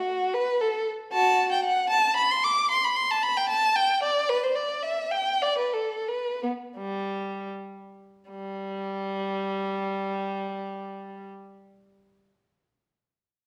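A single bowed violin, dark-toned yet smooth at the top of its range, sits up front with expressive vibrato and portamento in this radiant, flowing baroque-style suite movement in triple time, taken from a longer piece. The rubato phrasing slows between 3.5 and 8.3 seconds before a new section begins, and the violin falls silent at 11.3 seconds. A reverberant stone room surrounds the solo line.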